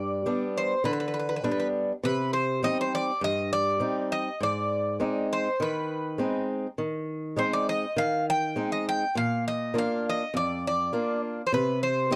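Dry and close, this short cut from a longer piece has the intimate feel of a 1970s studio recording, with both instruments sitting up front. It is Greek folk music for a bouzouki band, moving at 101 BPM in a straight 4/4 with a cool, brooding mood. The acoustic bouzouki carries the melody from B4 to G5, its picked double strings giving a metallic ring, with some strings doubled at the octave. Beneath it, a fingerpicked acoustic guitar in a swing style plays accompaniment from F2 to G4, sounding boxy and warm. The harmony moves from G to Cm, then to Ab at 4.4 seconds and Bb at 9.2 seconds, before the chords drop away at 11.5 seconds just ahead of the cut at 12.2 seconds.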